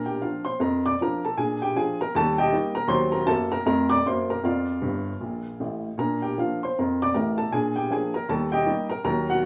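Playful and swinging, this brief excerpt of stride jazz in Bb major moves at 156 BPM with a lilting swing feel, as a woody, up-front upright piano plays solo across a broad register, slipping in a fill between 4.8 and 6.0 seconds, all set in light studio reverb with the rough charm of a home demo mix.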